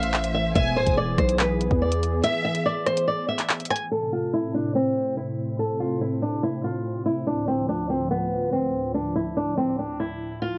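A half-time drill beat at 143 BPM opens this cold, ominous hip hop piece, with a knocking kick, tape-softened hats, handclaps and rim clicks up front beside a growling, buzzy 808-style bass that drops out at 2.2 s as a break begins. A fingerpicked flamenco guitar carries the melody in A harmonic minor through a low-pass filter, cassette grit and analog delay, while a lush bowed violin section adds a brief vibrato line with analog delay and a dark, detuned sawtooth pad sustains chords with chorus underneath. The drums stop at 3.8 s, leaving guitar and pad to move from Am to Dm under a filter sweep that runs from 3.9 s to the end, in a lightly reverberant, lo-fi home-cassette sound.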